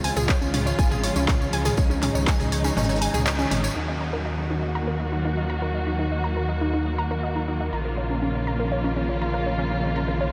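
Soaked in a huge, dreamy reverb with a long tail, this driving, dark melodic techno passage at 121 BPM in Eb minor is cut from a longer piece. A dark symphonic string section holds sustained, bowed chords with vibrato, while a lush, warbling unison pluck spins arpeggios through analog delay. A menacing detuned saw bass sits up front with saturated grit, and a very quiet swarming drone hovers on Eb beneath them all. Strings, pluck and bass pump against the sidechain. In the opening stretch, a punchy layered electronic kick leads an analog drum machine of handclaps, hi-hat and toms, with a faint, airy acoustic kit of hi-hat, shaker and snare, and a distant, jingly tambourine. The kick drops out, and the drums fall away at 3.6 seconds. From 3.8 seconds a filter sweep moves across the arpeggio as the chords move from Db to Ebm and then Bbm.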